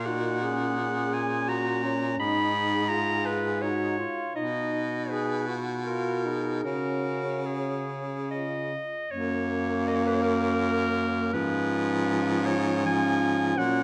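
Moving in a triple metre with a free, rubato pulse, this tender classical piece for a quartet of single reeds is cut from a longer work. Up front, a bright clarinet carries the lyrical melody, while a mellow alto saxophone with light vibrato, a soft attack and a smooth top sings a second line from the background. Beneath them, a tenor saxophone with vibrato sounds distant and roomy as it fills in the accompaniment, and an edgy baritone saxophone, also up front and with vibrato, anchors the bass. All four voices play throughout, from the start to 13.8 seconds, inside a recital hall reverb that lends the ensemble a wet, lingering glow. The harmony moves from F#/A# through G#m and C#sus4, and a new section begins at 9.1 seconds on F# before turning toward C#7/G#.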